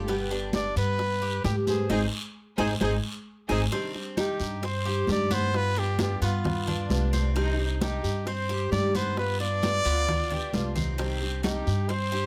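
A dark, lush violin section, a fingerpicked nylon-string guitar, a bright, metallic Cuban tres playing arpeggios and a woody pizzicato upright bass open this excerpt of Cuban son in a guajira vein, with bongos, congas and guiro joining at 0.1 seconds. A trumpet takes the solo melody from 0.6 seconds, miked closely and up front, with vibrato, scooped notes and a punchy pop-style tone set in plate reverb. A band accent and a drum fill lead into a new section at 3.7 seconds, where the violins drop out and later return in the background. The bass sits thumpy and forward, the guitar shows finger squeak on fresh strings, the high-tuned congas ring under soft hands while low, round bongos stay in the background, and the guiro adds a raspy scrape. Captured with detailed microphones and light reverb, the mood is nostalgic and warm.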